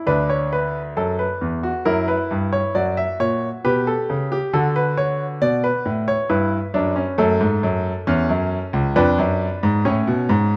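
A stately, elegant baroque-style three-part fugue in B minor at a measured 68 BPM, cut from a longer piece, for solo grand piano with a clear, smooth, vintage tone and short sustain, heard up front through close, detailed microphones in light reverb as its lines span C#2 to E5 over chords moving from Bm/D through F#7 and F#m to a closing C#7/E# near 9.0 seconds.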